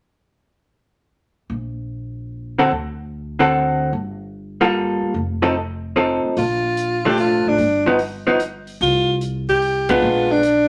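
A swinging three-beat lilt drives this short, playful slice of small-group jazz in the swing and bop vein, cut from a longer piece and relaxed in mood. A woody, thumpy upright bass, plucked on steel strings, opens the passage at 1.5 seconds. A dark, clean, compressed hollow-body electric guitar soon joins up front to pick out accompanying chords. At 6.4 seconds the second section begins as a clear, close-miked alto saxophone takes the melody with vibrato, sitting prominently in the mix. An open acoustic drum kit with dark cymbals and a boomy kick keeps time on hi-hat and ride from the background. The band hits a shared accent at 9.8 seconds, all within a moderate studio reverb.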